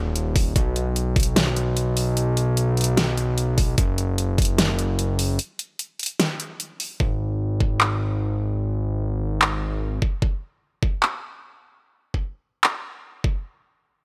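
Euphoric and playful, this dry future bass excerpt at 149 BPM rides a swung half-time groove: a thick, detuned sawtooth-and-square analog bass with sidechain pumping and a fast, plucky filter pushes up front until 10.0 s, while an overdriven dubstep kit of huge snare, bright hi-hats and handclaps pairs with a knocking electronic kick that drops out at 4.5 s and returns at 7.0 s.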